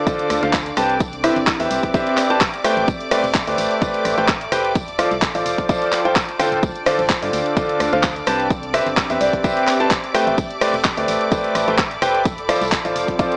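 A clear, up-front grand piano riff leads this bittersweet, energetic piano house passage at 128 BPM. It sits over sustained chords from a bright, biting violin section and a warbling, nostalgic tape-like pad with chorus, all three pumping to the sidechain through a Dm7, Cmaj7, Am11 and F6 cycle. A punchy, tape-toned electronic kick and a layered house kit of handclaps, hi-hat and rim click drive the lightly swung groove, joined by a very quiet acoustic kit with hi-hat, snare and tambourine and a hollow, organ-like FM bass. A woody, soft-mallet marimba adds a background melody briefly from 1.2 to 1.7 seconds and again from 6.9 to 10.7 seconds, and the whole mix has a gritty, small-speaker sound.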